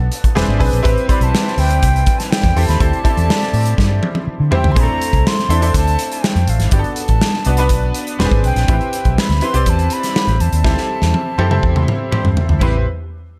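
Polished 1980s jazz-funk pop in A dorian, moving at 122 BPM in a straight 4/4 with a bittersweet, slick mood, this short cut from a longer piece rests on chords like Am9, D9sus4 and Bbmaj9#11. A dark, foam-muted fingered electric bass sits up front with a round, punchy tone, paired with a modern acoustic drum kit whose punchy kick, medium-tuned snare, hi-hat, toms and crash ring out in a pumping room with gated reverb. A bright grand piano carries the accompaniment throughout, its brilliant, intimate sound touched by analog chorus, audible action noise and long sustain. From 1.1 seconds a breathy silver concert flute takes the melody, straight-toned and tongued with lifted highs and an expressive edge. A mellow jazz-style horn section, octave-doubled with vibrato and a smooth top, supplies a second line in the background during the opening and returns at 11.4 seconds. Drum fills close each section, and the full band hits a shared accent from 10.6 to 12.6 seconds, all set in a small room ambience.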